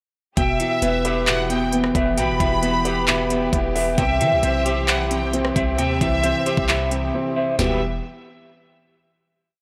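Dark and menacing, this short half-time trap piece sets an overdriven, knocking drum kit with crisp hats, sharp snare, handclaps, rim clicks and toms over a deep, boomy 808-style bass with sliding sub notes, while a slightly broken-up electric guitar loops a falling arpeggio through tremolo and tape echo, a dark, boxy grand piano repeats its own patterned arpeggio, muted strings hold a veiled background pad, and a bright, distant violin section adds a sparse echoing counter-melody, all in a dry, gritty recording that drops to silence at 7.1 seconds before a final chord at 7.6 seconds.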